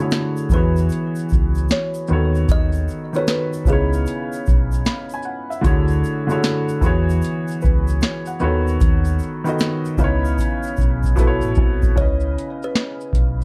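Lo-fi hip hop with a dreamy, nostalgic mood, this excerpt rides a swung sixteenth-note feel over lush jazz chords such as Dmaj9#11, E69 and C#m9. A soft, felt-muted upright piano sits up front with a mellow, intimate tone, colored by cassette tape and plate reverb. A woody, close-miked kalimba carries the melody with a bright thumbnail pluck and tape echo, stopping at 4.3 seconds and returning at 12.0 seconds as the harmony settles on C#m7. Underneath, a booming analog drum machine supplies a deep kick, crisp snare and metallic hats, with a fill at 10.4 seconds, while a hollow-body fingered electric bass adds a round, punchy low end. A grainy egg shaker sits quietly in the background, and the whole mix has a dark production with light reverb.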